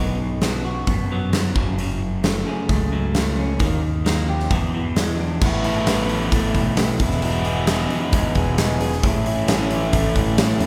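This carefree, wistful indie rock excerpt opens with two picked electric guitar riffs and a fuzz bass sounding together. One guitar sits in the background through a small old amp, twangy and slightly broken-up, while the other is overdriven and compressed with a warm tone. Beneath them, the picked bass runs through overdrive and fuzz, its direct-and-amped sound punchy in the low end. At 0.4 seconds a big acoustic rock drum kit arrives up front in a bright stone room, with a fat snare, kick, hi-hat and crash cymbal. The harmony moves from B through F#madd9, D# and E7, then shifts at 5.4 seconds to Asus2 and Emaj7 before landing on A, all carried in a moderate concert-hall reverb that suggests a church or hall.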